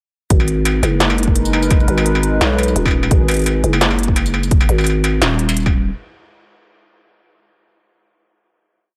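Half-time drum and bass in G# minor at 171 BPM, this heavy, dark piece is one short drop built on a G#madd9 chord, where a growling, buzzy 808-style bass plays chopped phrases up front, an electronic kick and a clanging, crisp industrial kit with tambourine and struck metal lay down a sparse half-time beat with a slight swing, tape-warm and re-recorded in a large room, and a deep, detuned analog pad with chorus, phaser and sidechain pumping holds sustained chords from 0.9 to 4.5 seconds, all in a dry, gritty hardware sound.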